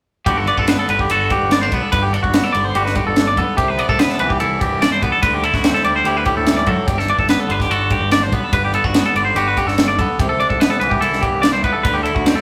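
A rough rehearsal-room recording with moderate studio ambience captures this wistful, bright slice of math rock and midwest emo, cut from a longer piece, at 145 BPM in straight 4/4 and G major, with every part playing from 0.3 s. Two clean, twangy electric guitars carry the harmony: one comps up front through spring reverb while the other picks arpeggios in a higher register. Beneath them sit a growling, overdriven picked bass and a crisp, airy fusion kit with punchy kick, high-tuned snare and ride cymbal, as the chords move through Gmaj9, Cmaj9 and D9sus4 twice.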